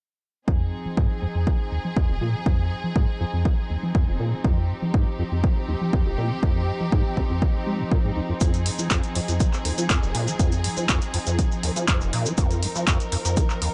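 Hypnotic and gritty, this acid house excerpt in F minor at 121 BPM sets a rubbery, resonant acid bass riff with overdrive, chorus, delay, sidechain pumping and a filter sweep beneath lush bowed strings holding an Fm7 chord, an up-front, tape-warm electronic kick, and, from 8.4 seconds, analog drum-machine handclaps and hi-hat with grainy maracas in the background, all in a dry, gritty hardware sound.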